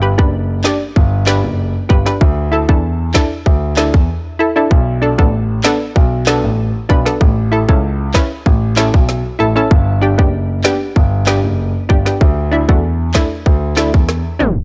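Dancehall with a bouncy, summery mood, cut from a longer piece, where a dark, mellow grand piano carries the deep bass, a hollow, detuned square-wave pluck with chorus, ring modulation and sidechain pumping supplies the accompaniment, and a tight, overdriven electronic kit of handclaps, rim click, woody snare and kick sits up front, all in a dry production that breaks briefly at 4.1 seconds over chords moving from G through Dsus2 to Bm7 and A before a tape stop at 14.4 seconds.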